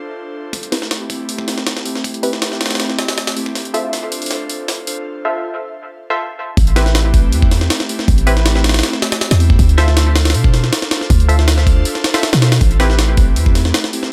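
An echo-heavy, lightly reverberant mix opens this raw, frenetic drum and bass and jungle excerpt with an airy, detuned pad and a muted, 12-bit-grained dub chord stab, which rides a filter sweep once the compressed, pitched-up sampler drum kit with its thumpy kick and high-tuned snare enters at 0.5 seconds, builds through a drum fill, and drops at 6.6 seconds into a deep, boomy, tube-saturated 808-style bass placed up front.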